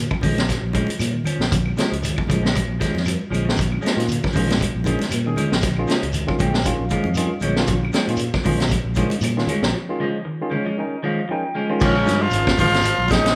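A fingered electric bass opens this defiant, intense afrobeat groove at 116 BPM in Bb dorian, joined at once by an up-front vintage drum kit with a punchy kick and high-tuned snare, woody claves, soft-handed congas, a grainy shekere and two clean semi-hollow guitars, one picking quiet arpeggios and the other striking stabs through spring reverb, before a barky electric piano enters at 4.0 seconds with fills and a break leads to 11.8 seconds, where a raspy, growling tenor saxophone takes the melody over a distant, brilliant trombone.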